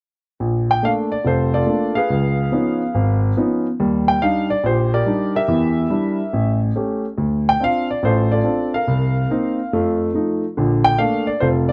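Sophisticated and playful, this short cut from a longer solo jazz piece swings at 142 BPM in 4/4, settled in Bb major. A grand piano carries everything alone from 0.4 to 11.7 seconds, ranging from a low F1 up to G5. Its tone is clear and polished, sitting up front in the sound. The harmony moves from Bbmaj7 through Db9 and Ebmaj7, then passes Em7b5, A7, Dm7, Cm7 and F7 before coming home to Bbmaj7. The recording is dry and close, with little reverb, in the manner of a 1970s studio session.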